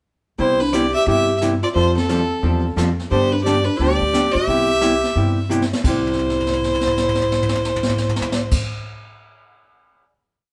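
A swung, four-beat western swing groove drives this short, cheerful, down-home country piece: a dark, clean hollow-body electric archtop guitar picks four-to-the-bar rhythm while a woody, thumpy upright bass on gut strings plucks a two-beat root-and-fifth pattern with walk-ups. Up front, a jazz brush kit with a boomy kick, a medium-tuned snare and dark cymbals keeps time with brush sweeps on the snare, and adds a fill at 5.5 seconds. The fiddle carries the melody, biting and intense with light vibrato, stating short song-like motifs. Beneath it, a mellow clarinet with a smooth top, scooped notes and vibrato plays a jazz-style harmony line mostly in sixths. After a brief pass through the opening chords, the band lands on a held final chord at 5.8 seconds as the drums fill across it, with the guitar ringing on and the kit sounding last until 10.0 seconds, in a natural live room with a stony reverb.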